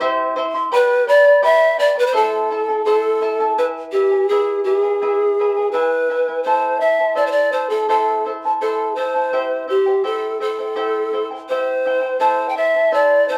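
This Andean folk piece, played by a small ensemble, carries an earthy, melancholic mood in a steady, straight two-beat metre. A reedy, bamboo pan flute carries the melody from start to finish, its airy tone shaped by gentle vibrato, a soft attack and a breathy chiff at the start of notes. Beneath it, a fingerpicked acoustic charango supplies the accompaniment, its doubled strings, some tuned in octaves, giving a shimmering sparkle. Both instruments are up front, the flute close-miked and more prominent. The harmony moves from C through G and A minor, then shifts to E at 3.6 s as a new section begins, before returning to A minor, C and A minor again. The players perform live together in one room, and a studio reverb gives the short passage a wet, resonant glow.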